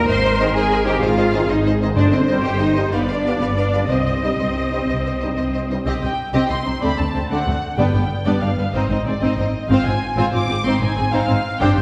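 A rich, up-front double bass section anchors this heroic adventure film-score cue, bowing with vibrato beneath a full string orchestra in 12/8 at 125 BPM. The mood is adventurous and determined, in C minor. A dark, lush violin section carries the melody, supported by a warm second violin line, a smooth viola accompaniment and a focused cello bass. At the outset, a distant, mellow French horn section and a clear, tight trombone section hold sustained chords in the background until about 5.8 s, while a very quiet timpani strikes with hard mallets, first around 2.0 s. From 5.9 s the harmony turns to C harmonic minor, and the strings continue alone apart from one more timpani stroke. The ensemble sits further back in a wet scoring-stage reverb, and the clip is cut from a longer piece.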